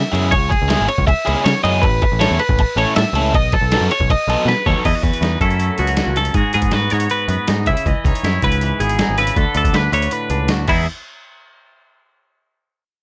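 A bright, clean twelve-string electric guitar spins up-front arpeggios through this wistful, intricate math rock and midwest emo excerpt at 159 BPM, joined by a punchy picked bass, a gritty, pitched-down boom bap sampler-style kit with a thumpy kick and high-tuned snare, and a biting, double-tracked overdriven riff that gives way at 4.8 seconds to a twangy clean guitar as the chords move from C#m through Esus2 and C#m9 to Emaj7 in a dry, close room.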